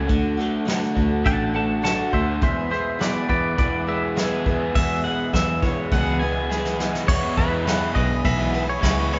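Folk rock and heartland rock with an open-road, jangly mood, cut from a longer piece, where a bright, twangy twelve-string electric guitar carries the melody up front with spring reverb, taking a clean solo through the first 4.7 seconds over a shimmering, octave-doubled twelve-string acoustic, a crunchy double-tracked overdriven riff guitar and a round, foam-muted fingered bass. A soft brush kit sits close with a tight kick and medium-tuned snare, playing a fill at 6.5 seconds, while a very quiet, flute-like tonewheel organ holds sustained chords with key click and chorus vibrato. A pedal steel guitar adds a brief second line with volume swells and slide from 4.8 seconds, all set in the lush reverb of a recital hall with a soft, rolled-off top end.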